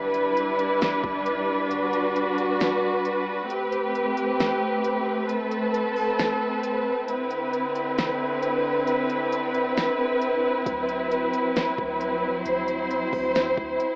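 A half-time 4/4 groove at 134 BPM from a smooth, electronic R&B drum kit with fat snare and smooth hats carries this hazy, melancholic cloud-rap excerpt in A dorian, where a veiled, lush con sordino string section sits up front, sustaining bowed chords with vibrato through G6, Am9, Cmaj9 and D13, while a round, dark 808-style bass murmurs in the background until 2.6 seconds, when the kick also drops out, both returning at 10.7 seconds, all bathed in plate reverb with a rough home-demo, AM-radio character.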